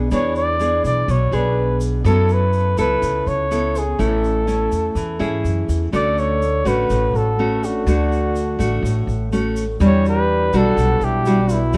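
Bossa nova at 124 BPM in a relaxed, romantic mood, cut from a longer piece, moving from A major into D major at 5.9 s. Up-front fingerpicked nylon-string guitar with full body and a touch of finger squeak, woody, thumpy pizzicato upright bass on gut strings and a softly attacked flugelhorn melody with light vibrato sit over a grainy, distant tube shaker. At 5.9 s an airy, bright alto flute joins as a background second line, all under light reverb and a worn, warbling cassette-tape character with drifting pitch.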